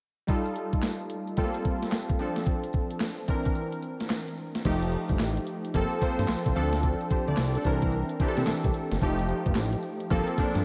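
A crisp 8-bit drum machine sits up front with a thumpy kick, medium-tuned snare, handclaps, hi-hat and crash, overdriven and re-recorded in a small room, driving this slick, bouncy new jack swing cut at 110 BPM with a 16th-note swing. Round, detuned sawtooth analog keys with chorus and a filter sweep carry the F9, Gm11, Dm7 and C9 changes from the start, and after a break at 3.6 seconds a fat, saturated sawtooth bass enters at 4.7 seconds. A moderate plate reverb soaks the whole mix in a dreamy haze, and the tuning sits slightly flat at A4 = 436 Hz.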